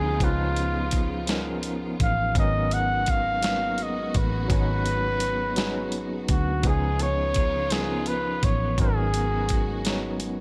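Slow, sultry six-eight R&B at 56 BPM in G# dorian, yearning over C#9 and G#m11 chords, with a breathy, whispered flugelhorn melody up front, an overdriven tine electric piano shimmering with fast tremolo through a combo amp, lush bowed strings sustaining chords, a round, foam-muted fingered bass, and a gritty, compressed sampler-style drum kit with a thumpy kick that enters at 0.2 seconds, all set in digital ambience.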